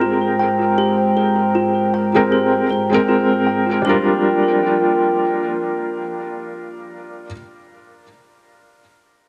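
A slow 4/4 pulse at 78 BPM, lightly swung on the sixteenths, sets a dark, cinematic trip hop mood in G phrygian in this short cut from a longer piece. A felt-muted upright piano sits up front with intimate, mellow accompaniment, its thin felt and audible action noise colored by tremolo and tape echo. Alongside it, a deep, moody analog pad, also up front, holds sustained chords with a slow attack, its detuned square, sawtooth and sub-octave tones treated with a subtle chorus. A delicate, tinkling music box plays close-miked arpeggios through a vintage 12-bit sampler grit, low-pass filter and analog delay, then drops out at 4.2 s. The harmony moves from Abmaj9 to Gm7 at 3.9 s, and a moderate plate reverb with an echo-heavy mix lends the whole a shadowy depth.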